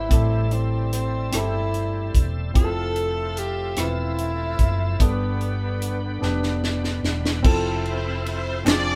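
A mellow tenor saxophone with vibrato and scooped notes carries the melody of this slow, reverent, soulful gospel excerpt in 6/8 at 49 BPM, over a warm concert grand piano, a bright, shouting tonewheel organ with slow rotary speaker and light overdrive, a very quiet French horn section, a round, punchy hollow-body electric bass and an up-front, tight funk drum kit, all playing live together in one room; the saxophone falls silent at 7.0 seconds during a drum fill, an expressive bowed string section takes up the melody at 7.5 seconds, and crisp group handclaps enter at 8.7 seconds.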